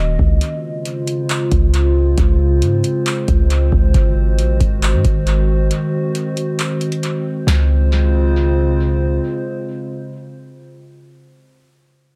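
A warbling, detuned pad of sustained chords and a deep, boomy 808-style bass open this floating, blissful cloud-rap excerpt at 0.0 seconds, moving from Dbmaj7 to Ab7 in Db major at 136 BPM with a half-time feel and a nostalgic lo-fi haze of chorus, built-in reverb and sidechain pumping on the pad. A booming analog drum machine sits up front with a deep kick, crisp snare, handclaps and metallic hats, all thickened by tape echo, until it drops out at 7.6 seconds. The mix is dry in room sound but heavy with echo, and the dark pad carries on alone after the bass ends at 9.2 seconds, ringing out to 11.1 seconds.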